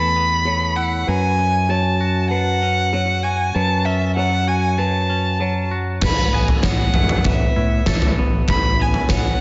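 A dark, smooth violin carries the melody from the first moment, bowed with vibrato and sitting up front, over a growling, overdriven fingered bass and arpeggios from a twangy, clean electric guitar treated with phaser and a felt-muted upright piano whose boxy tone and audible action noise stay in the background. This cut from a longer post-rock piece moves at 97 BPM in a straight 4/4 in A major, and its mood is euphoric and cinematic. The harmony shifts from Esus4 to F#m, then opens onto Asus2 at 6.0 seconds, when a huge arena drum kit crashes in with a punchy kick, fat snare, toms and cymbal crashes. An airy, breathy pad joins very quietly at 6.9 seconds, adding detuned, chorused sustained chords. Slapback echo touches the violin, piano and guitar, while a lush hall reverb and a rolled-off top end give the whole a big arena sound.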